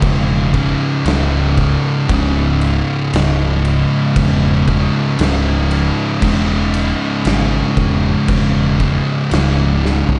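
Stoner and doom metal at a crawling 58 BPM in C# minor, this heavy, hypnotic excerpt rests on a single C#m chord as two thick fuzz guitars grind out a low riff, one up front and the other dark in the background, over a round, overdriven fingered bass and an oversized low-tuned drum kit with a punchy kick, dark cymbals and a gritty, saturated stone-room sound, closing with a drum fill at 9.8 seconds in a dry, dark production.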